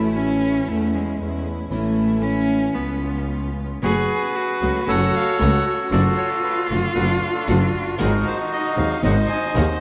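A rubato tango fragment, melancholic and tense, where a bowed cello with soft-attack vibrato and portamento sings a slapback-echoed second line up front over a biting, intense bowed double bass, fingerpicked nylon-string guitar in the background and very quiet sul tasto chamber-string stabs, until a reedy, bright bandoneon takes the melody at 3.8 s as the harmony turns minor, all held in a vast, echoing cathedral reverb.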